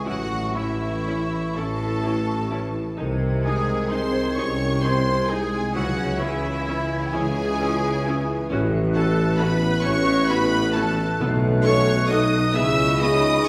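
A warm, lush violin section carries the tender, lyrical melody high above a full orchestra in this classical passage in a slow, rubato 6/8, cut from a longer piece. Beneath it, a second, clear violin section, a bright clarinet, a dark, distant cor anglais and an airy, hollow small flute group weave quiet second lines in the background, while a very quiet viola section adds intense, lightly vibrato accompaniment and a dark bassoon sits low with a smooth top. Mellow French horns hold soft-edged sustained chords, and a very quiet concert harp rings out thumb-plucked arpeggios across its span. The bass rests on distant cellos, focused double basses and a present tuba, with soft-mallet timpani barely audible between 11.2 and 12.5 seconds as the harmony moves to a B7 and settles on C#. The whole ensemble sounds in a wet recital-hall reverb.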